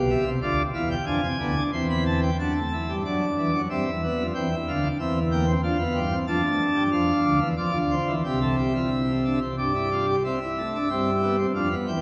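A wet cathedral reverb with a long 5.1-second decay surrounds this short passage, and faint lossy compression artefacts colour the recording. It is a classical, baroque-style three-part fugue for solo pipe organ in 3/4, with an elegant, joyful character and a straight feel. The plenum registration sits up front, full and brilliant, its mixtures lending a romantic voicing that spans from deep bass notes to a high, ringing treble. The harmony moves through diminished, suspended and seventh colourings before settling onto a firm C major chord at 10.2 s, which opens the closing section. Cut from a longer piece, the passage runs to 12.0 s, with the organ sounding throughout.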